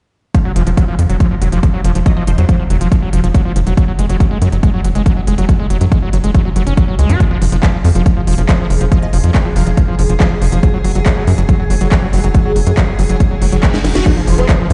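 Heard as if through a big sound system in a bare room, with a large studio reverb and a dull top end, this psychedelic trance section feels psychedelic and alien. An overdriven, heavy electronic kick sits up front beside a punchy, saturated sequencer bass that drives with a tight, plucky sawtooth tone, while an overdriven techno kit adds a cracking snare, smooth hi-hats, handclaps and crash cymbal. Over them a screaming, squelchy acid riff snarls through distortion, chorus, sidechain pumping and dub echo. In the background a juicy, resonant blip pluck flickers through phaser and echo, and from 8.0 s an evolving, morphing wavetable pad drifts in behind it with ensemble chorus and pumping. A reverse cymbal and drum fill rise into an impact at 14.1 s, where a swarming, detuned rave lead bursts in, bright and aggressive, just as the passage is cut off.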